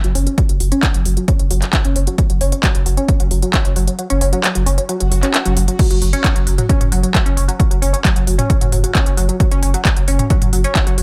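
A punchy, overdriven analog kick sits up front in this dark, relentless slice of driving peak-time techno at 133 BPM, pounding in 4/4 alongside a thick, saturated sine sub bass on F#1 and a layered techno kit of crash, handclaps, smooth hats and toms. A tight, wave-folded sawtooth-and-pulse synth riff with a filter pluck, chorus, phaser and dub echo carries a filter sweep through the opening. The kick drops out at 4.0 seconds while a background swell enters at 5.0, and at 5.8 seconds the track slams into the drop.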